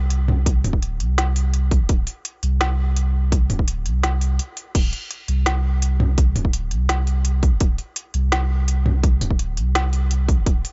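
Dark and spacious, this short cut from a longer half-time drum and bass track rides a half-time feel in 4/4. A saturated sub bass carries the low end from the start, its deep, thick tone sustained with a fast attack and set up front. From 0.1 s, an organic electronic drum kit supplies a woody snare, crisp hats, crash cymbal and toms with a tape-warm character, as if re-recorded in a small room. An electronic kick drum joins at 0.5 s, hard-clipped and forward in the mix. A brief break falls between 4.4 and 4.8 s. The sound is dry, with little reverb and a dulled top end that keeps attention on the weight below.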